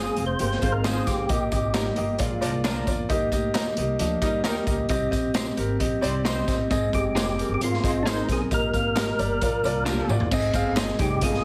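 A fat, lightly overdriven tonewheel organ with key click, chorus vibrato and a slow rotary speaker carries the melody in this joyful, danceable 1960s-style soul excerpt, sounding at the start and returning at 6.9 seconds. An up-front, boxy baby grand piano, a growly pizzicato upright bass and a gritty, saturated garage drum kit with dark cymbals and a punchy kick drive the straight 4/4 groove. In the background, a clean, picked electric guitar adds stabs, a dark hollow-body jazz guitar plays a riff, a smooth-topped horn section supplies a second line, and tambourine, egg shaker and group handclaps fill out the beat, all within a heavily compressed radio sound and moderate club reverb, with a drum fill at 9.9 seconds leading into a new section.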